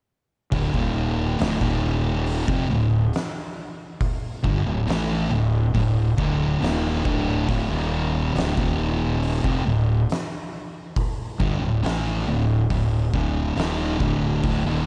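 A slow, straight 4/4 pulse at 69 BPM anchors this brooding, ominous stoner and doom metal excerpt, with an oversized low-tuned drum kit of hi-hat, fat snare and boomy kick sounding saturated and gritty from 0.5 to 14.6 seconds. Two thick fuzz guitars play a distorted, picked riff moving between D5 and Eb5 chords, one up front and the other set back in the mix, while a punchy, overdriven fingered bass with a bright, direct and amped tone sits prominently down at D1 to A1. Light reverb and a small room ambience frame a dark production whose top end stays rolled off.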